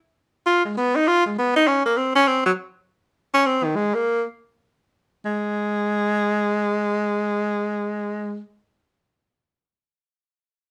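Played in free time, this short jazz fragment floats loosely rather than marching to a steady pulse, yet it carries a playful, swinging spirit. A lone tenor saxophone, bright and sung with vibrato, enters at 0.5 seconds and carries the whole passage as an up-front solo in a jazz style. Its line sits in the instrument's lower and middle register, between Eb3 and F4. The music moves through three short sections, shifting around 2.8 and 5.2 seconds, before the horn falls silent at 8.4 seconds. A moderate studio reverb gives the saxophone a touch of room around it, while the overall production leans dark and warm, setting off the horn's sheen as a cut from a longer performance.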